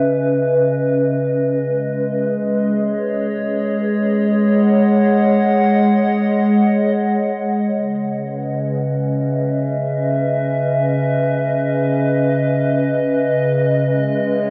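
Serene and spacious, this ambient excerpt drifts at 59 BPM in 3/4 in C# minor, where a lone, up-front, warbly tape-like pad with a nostalgic lo-fi square-and-triangle tone, slow attack and long release, thickened by chorus and diffuse ambient delay, sustains C#m7 and G#7sus4 chords through a dark production and a huge reverb tail, returning to C#m7 at 7.7 seconds before settling on G#7sus4 at 13.8 seconds.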